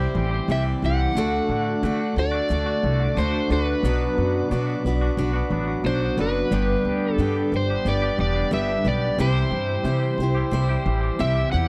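A straight 4/4 pulse at 90 BPM carries this hopeful, open-road folk and heartland rock passage, where a woody, up-front pizzicato upright bass anchors a bright, boxy picked parlour acoustic guitar and a clean, compressed twangy electric riff shimmering with harmonic tremolo, while an overdriven slide guitar sings the melody up front over a very quiet, piping tonewheel organ holding sustained chords through a slow rotary speaker, all captured in a dry, close 1970s-style studio sound as the chords move from C through D, Bm and G.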